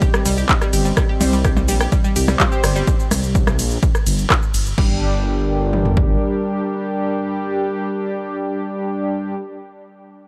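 A punchy analog drum machine drives this melodic techno excerpt at 126 BPM in straight 4/4, its kick and toms sitting up front with a tape-tinged, small-room character, joined by a layered techno kit of smooth hi-hats, handclaps, rim clicks, shaker, percussion blips, ride and crash. The mood is cinematic and melancholic in G minor, opening in a drop over a C minor chord before the harmony settles on G minor at 4.8 seconds. Underneath, a menacing detuned sawtooth bass in unison growls in the low register with a filter swell and tube saturation, pumping against the kick. A round, nasal pluck plays bright arpeggios treated with chorus, phaser and tape echo, while a bold, brassy pad punches out stabs colored by tremolo, cassette grit and its own echo. In the background, a deep, moody pad holds sustained chords with a slow attack and a moving notch, its chorus and pumping adding gentle motion. 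The overall sound is dry and gritty, as if captured through hardware with transformer saturation.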